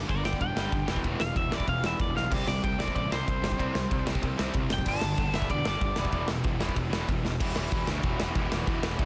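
A dense, heavily limited punk rock mix in a small room, this upbeat, rebellious excerpt cut from a longer piece charges along at 189 BPM in a straight 4/4, moving through G, Em and C. Three distorted guitars stack the riff: a tight, bright one and a sludgy, double-tracked overdriven one sit in the background, while a compressed, picked part stays very quiet beneath them. A growly fuzz bass, direct and amped, drives the low end with an overdriven edge. Up front, a big acoustic rock kit with a boomy kick and medium-tuned snare rides crash, ride and splash cymbals, dropping fills at 2.2 and 7.2 seconds. A twangy, slightly broken-up lead guitar solos high over the top from 0.1 seconds until it stops at 6.3 seconds, leaving the riffing band to carry a new section from 7.4 seconds.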